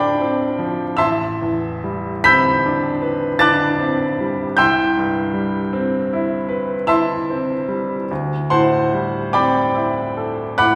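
Flowing in a slow, rubato 9/8 at roughly 45-53 beats per minute, counted in dotted quarters, this short passage from a longer impressionist classical work drifts with a hazy, dreamy mood. A solo baby grand piano carries the whole piece, ranging from A1 up to B6 and tuned to A4 = 442 Hz. Its tone is clear and natural, placed up front and intimate, with long sustain and the mechanical sounds of the action audible beneath the notes. The harmony glides from Dm7 through Am11 at 1.0 seconds and Cmaj7 at 4.6 seconds before settling on D9sus4 at 8.1 seconds, keeping the colour suspended and unresolved. A lush recital-hall reverb, captured in a church or concert hall, blooms around each chord, adding to the floating, veiled atmosphere.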